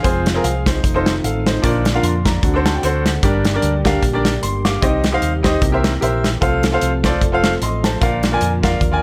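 A clear, boxy grand piano opens this jubilant, reverent uptempo gospel excerpt in a swung 4/4 feel, with the full band in place from the start. A natural country drum kit sits up front with a punchy kick and a medium-tuned snare over hi-hat, while a hollow-body short-scale electric bass, fingered and amped, adds a dark, round low end. Behind them, a very quiet tonewheel organ holds mellow, clean sustained chords with chorus vibrato, key click and a slow rotary speaker, and a tight French horn section, also very quiet, lays smooth classical-style chords alongside. The short-sustain piano carries the accompaniment and breaks into a brief fill from 2.4 to 3.2 seconds over D7, as the harmony moves from Fm through F7 and Bb toward Gm, Cm, C7 and F/C. The drums drop out at 8.9 seconds, and the band closes on Bb in light reverb and small room ambience.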